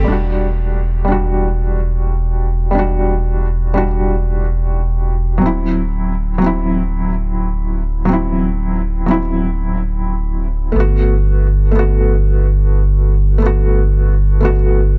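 Melancholic and dark, this fifteen-second fragment of trip hop at 90 BPM in E minor, with a light 16th-note swing, sets a felt-muted upright piano, mellow and intimate with audible action noise, short sustain, tremolo, a low-pass filter and tape echo, over an up-front, deep, round dub sub bass, as both play throughout through Em9, D9 and Gmaj9 in a small-room, shadowy mix that rolls off everything above 8.0 kHz.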